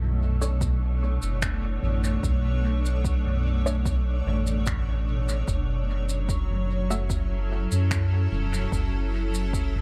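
An echo-heavy mix with little reverb carries this meditative, spacious ambient dub passage, cut from a longer piece, which moves from Bm9 to F#m7 at 5.5 seconds. A round, up-front sub bass with tube saturation sits beneath a blurred, evolving granular cloud pad of sustained chords, while a distant, roomy soft-mallet kit of finger snaps, shaker and toms trails dub echo. A muted, detuned filtered chord stab with phaser, analog chorus and dub echo enters at 0.4 seconds, and an overdriven electronic kick drum thuds deep in the background from 0.6 seconds.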